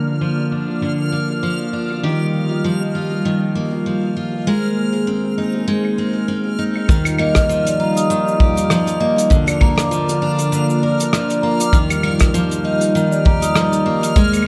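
Folktronica with a delicate, pastoral mood, this excerpt moves at an easy, lightly swung pace in 4/4. A picked steel-string acoustic guitar sits up front with arpeggios, its dreadnought body and occasional finger squeak softened by a low-pass filter and trailed by digital delay. Alongside it, a smooth, detuned sawtooth pad holds full-bodied sustained chords with a soft attack, long release and chorus, while a reversed, granular texture hovers high on a single bright, dreamy note bathed in its own reverb. A soft brush kit in a small room taps out claves, hi-hat, rim click and shaker, all run through low-pass filters. At 6.9 seconds the second section opens with a punchy, saturated kick carrying a gritty, rolled-off top and a pumping room sound, and at 7.2 seconds a vibraphone with soft mallets and the motor off adds a mellow, ringing second line through delay and plate reverb. The chords circle among Bb/D, Ebadd9 and Abadd9, all set in a moderate studio reverb.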